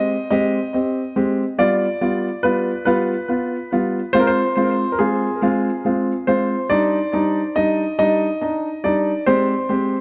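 A smooth, vintage-toned grand piano accompaniment and a clear, polished baby grand melody with analog delay sit up front from the start of this tender, romantic pop fragment in Eb major, moving at a slow 47 BPM in 6/8 through Abmaj7, G7, Fm and Ebmaj7, all bathed in a wet spring reverb and an echo-heavy mix.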